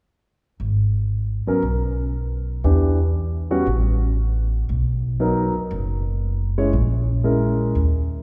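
Big band swing jazz with a dramatic, sultry mood, cut from a longer piece, where a woody pizzicato upright bass enters at 0.6 seconds and a polished grand piano joins at 1.5 seconds, both up front in a reverberant concert hall as the harmony moves from G#m through Em7, Bmaj7 and A#m7b5.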